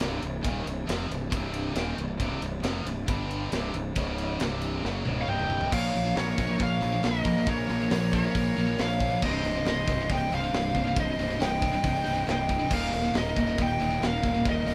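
A dark, heavy metal excerpt opens with two bright, distorted rhythm guitars churning a low riff in the background over a growly, punchy fuzz bass up front and a tight acoustic kit with a medium-tuned snare and rolled-off top, all sounding like a band playing live in one lightly reverberant room. During a drum fill that starts at 4.8 seconds, two high-gain lead guitars enter together at 5.2 seconds: a prominent melody line alongside a quieter second line with digital delay. A third double-tracked, compressed guitar thickens the riff from 5.7 seconds as the chords move through Bbm, Cm and Eb.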